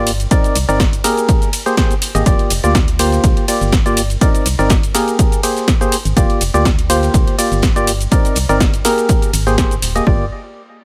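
Piano house with a bittersweet, energetic drive, this drop from a longer track pairs a hollow, up-front organ stab riff, treated with chorus, sidechain pumping and tape echo, with a dark, organ-like FM bass that pumps beneath it through a looping Cm9, Abmaj9 and Gm7 progression, while a punchy, tape-warm electronic kick, a punchy analog drum machine playing hi-hat, ride, shaker and snare, and a very quiet, damped 70s acoustic kit with a fat snare and dark cymbals keep the groove lightly swung in a dry, close sound.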